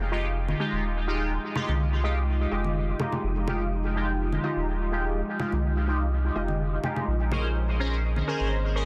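Dub techno with a cavernous, hazy mood, built on a round sub bass and juicy, resonant polysynth stabs carrying chorus, phaser and dub echo up front. Tape-warm congas with their own dub echo and a very quiet warbling lo-fi pluck riff play alongside, while a dark chorused pad sustaining chords from 0.4 seconds and an airy wind-like noise texture sit in the background of a dense, heavily limited mix moving from Fm9 to Bbm9 at 7.1 seconds.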